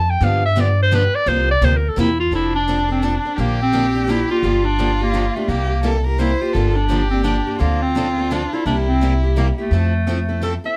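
Swinging in a lilting 3/4 at 170 BPM, this lively, playful excerpt of acoustic string swing in F major, tuned to A4 = 441 Hz, opens with a clear, punchy, forceful clarinet solo in a vintage jazz style, with light vibrato and a plate reverb, above a thumpy, woody pizzicato upright bass, both up front. Two picked steel-string parlour guitars, one with fresh strings and one sitting in the background, supply the accompaniment, and at 2.3 seconds a single bowed violin enters with a warm, expressive second line, its soft attack, vibrato and portamento heard close. The chords move from G7 and C7sus4 through Gm7, C7 and Dm7 to a closing Fmaj7, captured with close, detailed microphones and light reverb.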